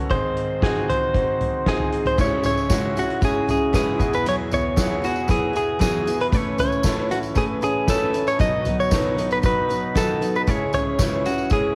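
A clear, deep-bassed concert grand piano opens this driving, dramatic piano-driven pop excerpt in C# minor at 116 BPM, joined almost at once by an up-front clean electric guitar melody washed in spring reverb and a dark, smooth soft-mallet drum kit with a fat snare and punchy kick, before a full-bodied picked steel-string acoustic riff and a jingly, close tambourine arrive at 2.2 seconds as the chords move through C#m, Eadd9, Aadd9 and B, all carrying the soft haze of a home cassette recording in light reverb.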